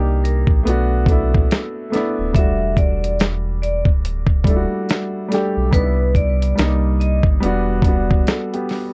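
Dark, lightly reverberant production frames this reflective, melancholic lo-fi hip hop excerpt in swung 4/4, where a woody, filtered upright piano and a deep, sine-toned sub bass with octave support a bright, metallic vibraphone melody struck with hard mallets and given a slow motor vibrato, while a gritty, compressed sampler-style soul drum kit with a thumpy kick sits up front and a jingly, dry tambourine joins very quietly at 3.2 s.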